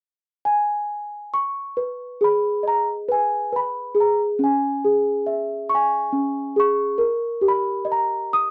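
A delicate, bell-like small celesta sits up front and carries the melody from 0.5 s, spanning C#4 to D#6 over G#m, C#m and D# chords in this dreamy, wistful fragment of children's music, which drifts in rubato 6/8 at about 46 BPM in G# minor, captured in a dry, close 1970s-style studio sound with light reverb.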